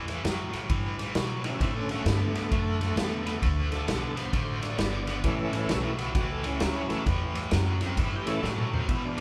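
Gritty and rollicking, this electric blues shuffle swings at 132 BPM in A mixolydian, with an up-front, overdriven stack guitar riffing through harmonic tremolo over woody, thumpy pizzicato upright bass and a punchy vintage kit with dark cymbals in a pumping small-room sound. At 1.4 seconds a bright tonewheel organ enters, shouting with key click, light overdrive, chorus vibrato and a slow rotary speaker, as the chords move from A to D5 and back to A at 5.2 seconds. A drum fill arrives at 8.4 seconds before this live-in-one-room cut ends, all washed in a large studio reverb.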